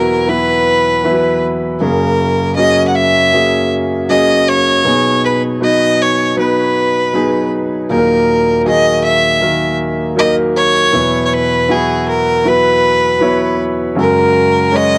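Heartfelt and hopeful, this pop fragment pairs a clear, smooth fiddle melody, bowed by one player with light vibrato and an even tone, with a concert grand piano accompaniment that is open and deep in the bass, with long sustain. Both instruments sit up front and carry a cassette tape coloring throughout the 15 seconds, over chord changes from Esus2 to F#add9, B6 and D#m. A small room ambience gives the whole piece the intimate feel of a home recording on cassette.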